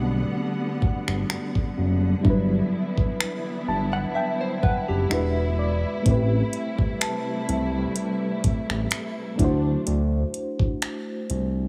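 Swung sixteenths in 4/4 carry this longing, sensual contemporary R&B excerpt, where an up-front electronic kit of finger snaps, metallic hi-hat and knocking kick enters at 0.8 s over a fat, saturated sawtooth analog bass. A round, warbling FM electric piano with chorus and tremolo plays a fill over the opening break, while veiled, con sordino strings hold lush chords until 9.9 s. A bell-like celesta with tape echo sits in the background, and a clean, direct-recorded electric guitar adds picked arpeggios with vibrato and tape echo from 3.9 to 5.3 s, all within a small, lightly reverberant room.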